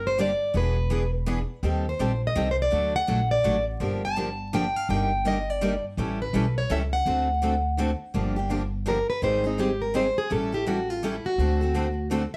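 A parlour-sized plugged-in steel-string guitar carries the melody up front from the first moment, over a woody, thumpy pizzicato upright bass with gut strings and a dark tone, in a fiery, virtuosic gypsy-jazz waltz with a swung lilt. Two bright picked steel-string guitars join at 0.2 s to comp the chords, one with a concert body and the other sitting in the background with an auditorium character, all wrapped in light reverb and a layer of vinyl crackle. At 8.1 s the lead guitar launches into a solo over a new chord passage before this fragment of a longer piece breaks off at 12.4 s.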